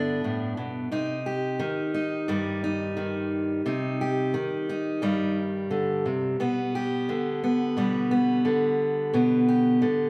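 Folk with a nostalgic, hopeful mood and a straight feel, carried entirely by a fingerpicked steel-string acoustic guitar that plays alone through the clip. The guitar sits up front with a fresh-stringed, auditorium-sized body, moving from G to C minor at 0.9 seconds and settling on G over B at 6.4 seconds. A wet stone-room reverb gives the live-in-the-room performance an airy, echoing space around each note.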